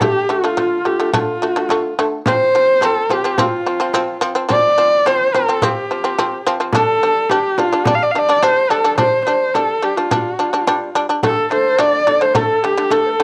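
Opening together at a galloping 107 BPM in F gong mode, a husky, boxy horsehead fiddle carries the vast Mongolian folk melody up front with vibrato and portamento over bright, buzzing, plectrum-plucked shamisen arpeggios and a small, dry frame drum played with soft hands, while a distant, airy bamboo xiao adds a second line until 1.9 s and returns at 11.2 s, the fiddle, shamisen and xiao carrying a cassette-tape tint in a small room on this home recording cut from a longer piece.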